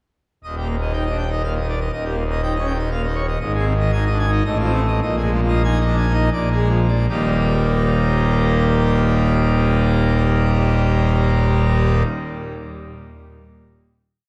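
Majestic and jubilant, this short classical organ toccata in Eb major and 3/4 time has a solo pipe organ on full organ, its brilliant mixtures sounding up front with romantic voicing as rocking broken chords sound alongside a second figure in the upper hand. The tempo moves between 73 and 122 BPM, slowing from 2.7 s as the harmony passes through Eb7, Ab and Bb7 before settling on a held final Eb chord at 7.1 s. A long, wet church reverb and a dark production surround the instrument to the end of the complete piece at 12.0 s.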